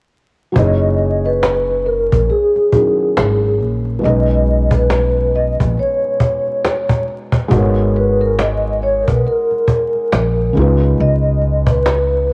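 A mellow, ringing vibraphone played with soft mallets and a fast motor vibrato carries the melody of this nostalgic, melancholic lo-fi hip hop fragment, floating over a dark, thick-felt upright piano that enters at 0.5 seconds, an up-front, woody pizzicato upright bass on steel strings, and a band-limited cajon with faint snares, moving with a light swing through F#13, B69, G#m11 and C#9, while cassette tape colors the piano, vibraphone and cajon and small-room ambience with vinyl crackle lends an intimate, homemade air.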